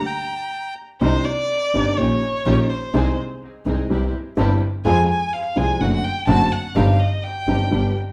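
A rich, bowed violin sits up front as a second line in this dramatic, tense tango excerpt, singing with vibrato and expressive portamento across its upper register before taking a solo from 1.0 seconds onward. At the very start, a reedy, close-miked bandoneon briefly states a single bright note, dry and full, beneath a touch of plate reverb. The rest of the band arrives at 1.0 seconds: a woody, boxy upright piano with short sustain handles the accompaniment, while a bowed double bass anchors the low end with a biting, nasal, earthy tone and light vibrato. A dark studio string section plays soft-attack stabs sul tasto, its pure, floating sound trailed by analog delay. The feel is rubato around 125 BPM in 4/4, and the harmony moves from Gm through Cmadd9 and onward to a closing Cm/G. The whole performance is heard from further back in a wet room with a reverb of 0.9 seconds.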